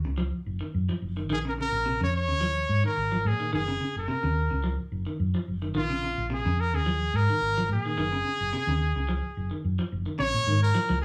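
A bright trumpet carries the melody in this funky, hypnotic afrobeat excerpt, entering at 1.3 seconds and sitting up front with light vibrato, scooped notes and a pop-style solo voice bathed in plate reverb. Beneath it, a dark, round hollow-body short-scale electric bass, fingered and amped, holds a prominent place in the mix from the very start. A clean, picked semi-hollow electric guitar spins arpeggios in a low register, its warm tone shimmering with tremolo. The groove moves at 108 BPM in 4/4 with a light sixteenth-note swing, set in Bb minor and tuned slightly below standard pitch. Harmony circles between Bbm7 and Gb colorings, including Gb6 and Gbsus2, within a moderate club ambience, and the clip is cut from a longer piece.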